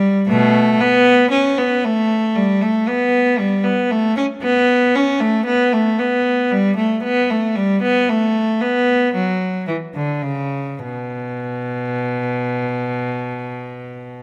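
A lone bowed cello carries this serene, radiant baroque-style suite movement, its reedy gut-string tone colored by light vibrato and period-style phrasing as it moves between B2 and C#4. The slow 4/4 pulse, around 53-58 BPM, breathes with rubato across the 14.2-second passage cut from a longer piece. Close, detailed microphones keep the rich cello up front, while a moderate concert hall reverb of about 2.0 seconds gives it a spacious glow.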